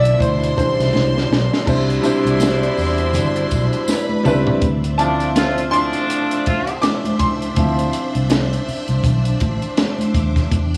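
This short excerpt has a smooth, close sound with light small-room reverb, opening onto a lush 1970s-style soul groove at 81 BPM in 4/4, swung on the sixteenths, in D dorian with a bittersweet mood. A clear, slightly boxy baby grand piano carries the accompaniment and steps forward as a solo from the start and again from 4.6 seconds, as the harmony moves from Cmaj9 to Dm9. Beneath it, a round, foam-muted vintage electric bass holds the low end, while a compact cocktail drum kit with a punchy kick, high-tuned snare and dark cymbals plays fills around 0.9 and 3.9 seconds. A shimmering sawtooth string machine with ensemble chorus sustains chords in the background, and bright, high-tuned congas add light percussion. A biting, intense studio violin section with light vibrato sings a second line from the start until 4.6 seconds. From 1.7 seconds a soft-attacked, loose jazz-style horn section punches in with stabs, joined briefly by a jingly tambourine.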